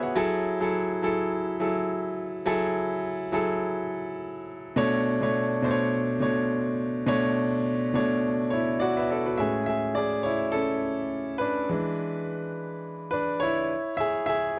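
A clear, natural grand piano carries this short soul passage entirely on its own, sitting up front in a dry, close studio sound with a 1970s character. The mood is cinematic and smooth, set at 104 BPM in 4/4 in F# minor, with a gentle swing on the sixteenth notes. The opening section moves through F#m9 and Bm9 harmonies, and across the whole passage the piano spans from A2 up to F#5. At 9.4 seconds the piano shifts into a new section, passing through Amaj7 and E7 before settling on a rootless F#7sus2 chord near the end. Little reverb colours the sound, keeping the instrument intimate and present as this fragment of a longer piece closes at 14.6 seconds.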